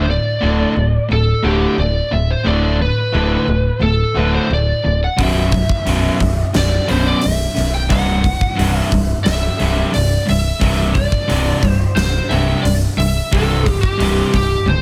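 A straight four-beat pulse drives this menacing hard rock passage, taken from a longer piece and set in a small room ambience. Two overdriven guitars carry the low riff together: one dark and biting, sitting in the background; the other bright and crunchy, touched with spring reverb. A picked electric bass sits beneath them with a direct, warm tone. Above, a lead guitar through a small cranked amp plays the melody, overdriven and given a slapback echo. At 5.2 s a huge acoustic arena kit arrives up front, with a punchy kick, a fat snare, hi-hat and toms in a pumping hall sound. The harmony moves from D5 to B5 at that point, then to C at 7.9 s.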